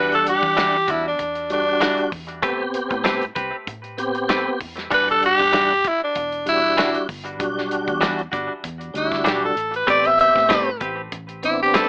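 A raspy, growling tenor saxophone leads this brooding, smoky soul blues in E minor at 97 BPM. It plays the melody up front over a full tonewheel organ with slow rotary speaker, light overdrive and chorus vibrato, twangy clean guitar stabs through analog delay, and a dark, foam-muted fingered bass. A small-room soul drum kit with a tight kick and rolled-off top joins at 0.1 s, keeping a straight-eighth feel with a light sixteenth-note swing as the chords move between Em9 and Am9, while light reverb and an AM radio sound colour this short cut from a longer piece.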